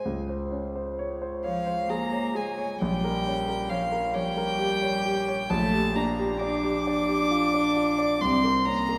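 Tender and serene, this slow, rubato romantic piano trio movement in 6/8 at 44 BPM (dotted quarters) is a fragment of a longer piece: a concert grand with deep bass lays down the accompaniment from the start, a clear, nasal, sul tasto cello sings a softly bowed second line beneath, and from 1.4 s a pure, floating violin carries the high melody up front, all heard from further back in a wet scoring-stage reverb as the harmony drifts from Db to Gm7/Bb and settles on C7.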